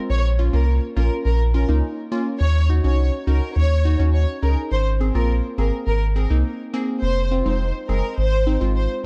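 Sultry and hypnotic, this short dancehall fragment moves at 104 BPM in a straight 4/4 in Bb minor. A round analog bass sits deep and up front from 0.1 s, carrying the low end with a sustained, sine-like tone shaped by a filter sweep. Above it, a lush studio violin section carries the melody between Bb4 and Db5, bowed with expressive vibrato and touched by digital delay. A glassy wavetable pluck enters at 0.4 s with crystalline, detuned accompaniment, its decaying notes colored by chorus, ring modulation and a moving notch. The chords cycle through Bbm, Ebm7, Abadd9 and Fm, and studio reverb gives the production a dark, warm atmosphere.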